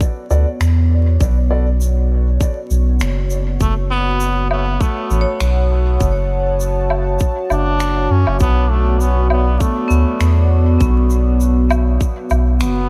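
A small room ambience and a layer of vinyl crackle frame this deep, spacious ambient dub excerpt in B minor, moving at 100 BPM in 4/4 with a light sixteenth-note swing. A dark, detuned sawtooth pad fades in and holds sustained chords through a chorus effect, while a tight, up-front electronic kick and a round, soft sub bass anchor the low end. An acoustic shaker, finger snaps and woodblock sit in a big-room sound with dub echo, and a mellow, woody upright piano drops a few echoed stabs near the start. From 3.6 seconds a close-miked trombone with a metal mute carries the solo melody in a buzzy, thin, brilliant tone, and at 5.2 seconds a vibraphone struck with hard mallets adds bright, ringing arpeggios with slow motor vibrato in the background, both trailing dub echoes. The harmony moves from Bm to F#m and settles on Bm7 at 8.4 seconds.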